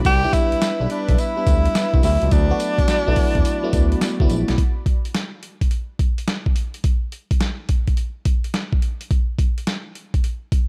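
A clear, up-front tenor saxophone carries a short pop-style solo with vibrato, subtone and scooped notes from 0.1 to 4.3 seconds in this bouncy, flirty new jack swing R&B excerpt, over a swung groove moving from Cmaj7 to D6. Beneath it, a glassy, bell-like FM electric piano treated with chorus and phaser, a smooth detuned synth bass and a bright, resonant pad with a filter swell sitting in the background all play until 4.6 seconds. The gritty, compressed sampler-style drum kit, with its thumpy kick, medium-tuned snare, hi-hat and tambourine, then carries on alone to 10.7 seconds in a dry, close-sounding mix.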